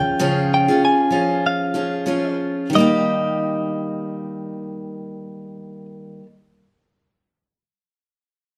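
A 60% sixteenth-note swing at 90-101 BPM in 4/4 carries this carefree, easy-going pop fragment in Eb mixolydian, slowing down over its first 2.7 seconds as a picked steel-string acoustic guitar, up front with finger squeak and an auditorium tone, accompanies a clean, compressed, direct-recorded electric guitar melody, the harmony moving from Db to Eb at 2.7 seconds inside the wet, large studio reverb of a band playing live in one room.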